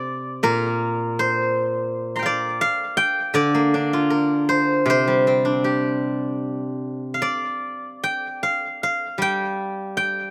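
A lone steel-string zither, played with fingerpicks, opens this short cut from a longer Chinese traditional piece, its ringing, silvery tone sitting up front and carrying a contemplative, longing mood. The playing moves in a free rubato around 73-84 BPM in the G yu mode, spanning Bb2 to C6 over about 10.3 seconds. A slapback echo trails the zither, and the outdoor recording is dry and open, with little reverb.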